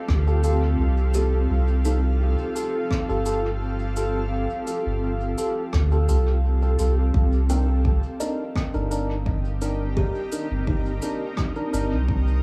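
A round, up-front sub bass with tube saturation anchors this hazy, deep ambient dub cut from a longer piece, moving at 85 BPM in C dorian over a blurred, evolving granular cloud pad that shifts from Fadd9 to Cm7 at 7.1 seconds. A layered electronic kick plays alongside a distant, roomy rim click and cabasa, while mellow tine electric piano stabs and soft, woody kalimba arpeggios, entering at 1.1 seconds, both trail dub echo. The kalimba rides a filter sweep through the first 7.1 seconds, all set in an echo-heavy mix with light reverb and small room ambience.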